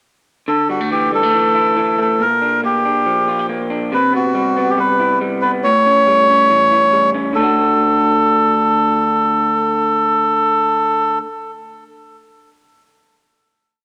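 A straight 4/4 pulse at 140 BPM carries this nostalgic, bright indie pop piece, tuned to A4 = 445 Hz. Up front, a reedy, breathy melodica with tube saturation sings motif-based song phrases over a slightly broken-up, lo-fi electric guitar through a small old amp, which plays fingerpicked roll-pattern arpeggios through Dsus2, Bb6, Cmaj7 and A7 before both parts settle on a final D chord at 7.4 seconds and ring out to about 11 seconds in a rough home demo mix with moderate plate reverb.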